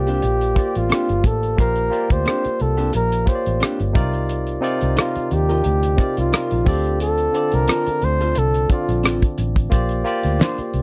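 Romantic and smooth, this short excerpt of lush 1970s-style soul sits at a relaxed 88 BPM in Bb major with a gentle swing, as a mellow, close-miked flugelhorn carries a jazz-style solo up front with light vibrato and scooped notes until about 9.0 seconds. Beneath it, a barky tine electric piano through a combo amp accompanies brightly, a slightly broken-up guitar through a small old amp picks a compressed, lo-fi riff, and a dark, foam-muted fingered bass stays round and present. A damped acoustic drum kit with a fat snare, tight kick, rim clicks and hi-hat drives the groove in a dry, close studio sound, moving through rich chords from Bb69 to Cm11 and Dm7 before returning home.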